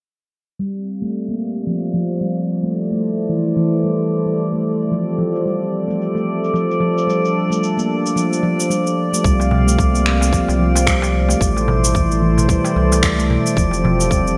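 A bright, 1980s-style digital sheen and a lush hall reverb frame this mystical, earthy downtempo excerpt, where an up-front, ringing stainless-steel handpan plays meditative arpeggios under a filter sweep over a warbling, detuned analog pad with sidechain pumping, tape-warm electronic shaker and finger snaps, and a glassy texture of drifting overtones from 2.3 seconds, before a deep, round bass and tight electronic kick arrive at 9.2 seconds with a crisp, dry darbuka tucked in the background.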